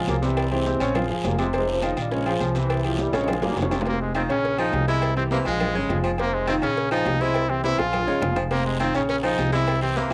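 A bright, punchy trumpet takes the lead at 3.9 s, playing an up-front solo with vibrato in a pop style over a driving, danceable salsa groove at 206 BPM in 4/4. Before it arrives, a warm trombone section carries the melody as an ensemble, with vibrato. A clear grand piano with long sustain plays accompaniment throughout, its vintage tone colored by cassette tape, while a woody, thumpy upright bass sits up front with dark gut-string pizzicato. The percussion combines high-tuned congas struck with hard hands, tight, dry cowbell and bongos, compressed, saturated metal-shell timbales with agogo bells in the background, and a raspy guiro that drops out for the middle stretch and returns at 8.5 s. A breathy baritone saxophone enters at 4.2 s as a second line behind the trumpet, treated with cassette tape and analog delay. The harmony cycles around C7, Bb5, F5 and Bbm7, with drum fills marking the turns, and this short cut from a longer piece carries the light reverb of a home cassette recording.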